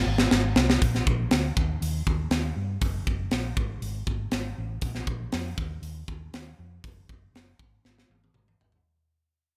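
A gritty, saturated metal drum kit with a high-tuned snare and tight kick sits up front in a pumping studio room, opening with a fill from 0.2 seconds and closing with another at 7.8 seconds, while a dark, round hollow-body short-scale electric bass plays underneath in this swaggering, energetic straight-feel hard rock clip at 120 BPM, cut from a longer piece, with light reverb and a fade-out that begins at 0.8 seconds.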